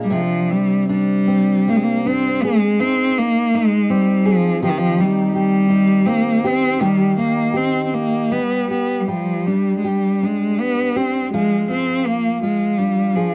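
Mournful and haunting, this Celtic slow air in C minor moves at a loose 80 BPM in 3/4, its rubato giving the beats an uneven, breathing feel. A clear, focused bowed cello carries the melody up front with vibrato, while a fingerpicked steel-string acoustic guitar sits lower in the mix, its warm auditorium tone marked by the odd finger squeak. The dry, close 1970s-style studio sound keeps both players intimate throughout this 13.3-second cut from a longer piece, with harmony drifting from Csus2 through Ab and Eb to a closing Ddim/F.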